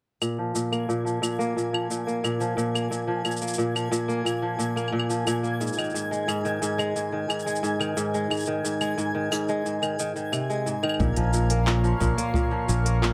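Folktronica in Bb minor at 89 BPM, this wistful, autumnal excerpt from a longer piece opens on a crisp, ringing kora playing fingerpicked arpeggios up front, softened by a low-pass filter and carried by delay and plate reverb. An organic electronic drum kit runs alongside it with claves, handclaps, a shaker and smooth hi-hats, giving the straight 4/4 a produced pulse. From 0.9 seconds a twinkling granular texture sits in the background, its slow-attack, sparkling tones hovering high with an octave-up shimmer and a long release. At 11.0 seconds the music shifts onto a Bb minor chord as a mellow, reedy accordion enters with full sustained chords, a bright fingered electric bass steps forward on a low Bb, and a boomy kick drum thuds in the background. The whole is set in a moderate studio room, leaving the kora and bass clear and present.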